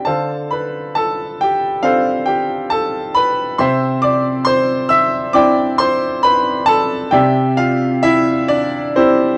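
A clear, up-front grand piano plays alone in this tender, lyrical classical fragment in C major at a rubato 67 BPM in 4/4, spanning C3 to E6 as it moves from Dm7 to Cadd9 at 3.6 seconds, with light reverb and a dark production shading the 9.4-second cut from a longer piece.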